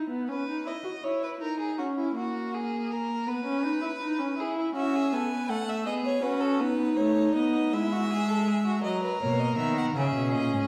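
Stately and elegant, this short cut from a longer baroque-style fugue for string quartet moves at 54 BPM in a straight 6/8, opening with a smooth, vibrato-rich viola accompaniment that a focused second violin line joins almost at once, before a clear first violin takes the melody at 4.8 seconds and a rich, expressive cello with portamento anchors the bass from 9.2 seconds, all set in a recital hall's reverberant glow and heard from further back in the room.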